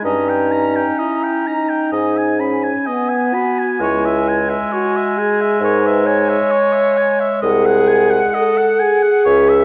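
A dark, warm recital-hall sound with a 1.6-second reverb tail frames this serene fragment of a slow romantic movement for wind quintet, moving at 65 BPM in 4/4 with a rubato feel in G# minor. The airy silver concert flute carries the melody with a soft attack and vibrato, while the oboe shapes a second line with a lighter vibrato of its own. The bright, vintage-toned clarinet and the up-front French horn fill out the accompaniment, the mellow, roomy bassoon supplies the bass, and all five play together across the 9.6 seconds as the harmony moves from D#7/G through G#m and C#m to G#7/B#.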